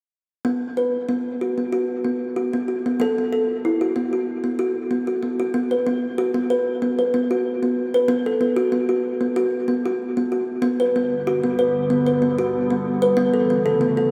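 Meditative and gentle, this world-flavored tuned-percussion piece in B minor moves at 94 BPM in a straight 4/4, cut from a longer work. An up-front kalimba plays woody, thumb-plucked arpeggios from 0.4 seconds, its short notes trailed by a diffuse ambient delay, while a glassy FM pad with a sub octave and ensemble chorus enters at 11.0 seconds with slow-attack sustained chords. The recording sits in a vast, echoing cathedral reverb with a 7.1-second decay.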